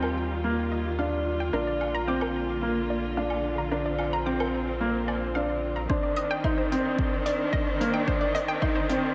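Hypnotic and moving, this piano and strings electronica fragment sets a woody upright piano riff with delay and shimmer reverb against rich, bowed string chords that pump under sidechain, a bright pluck arpeggio with chorus and delay in the background, a round, deep analog bass that drops out at 5.9 seconds, and brushed woodblock and hi-hat, until a punchy electronic kick arrives at 5.9 seconds to drive a build-up over a Cmadd9 chord in a moderate recital-hall space.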